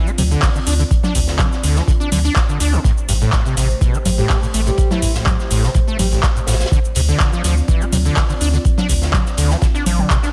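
Acid house with a trippy, driving feel, heard as a short cut from a longer piece in straight 4/4. An up-front electronic kick, deep and tape-warm, anchors the groove, while an electro drum machine adds congas, handclaps, shaker and metallic hi-hats re-recorded in a large room, and an acoustic jazz kit sits in the background with dark, smooth hi-hat and snare. A squelchy, gritty acid bass riff with a resonant filter sweep runs throughout over a round sine sub bass, both pumping along with a moody, detuned sawtooth pad that holds chords from Dm7 to Am7 and back. From 4.2 to 6.2 seconds a breathy, flute-like synth lead with vibrato, tape colour and delay floats a brief melody above the mix. The master is dense and heavily limited, set in a digital ambience.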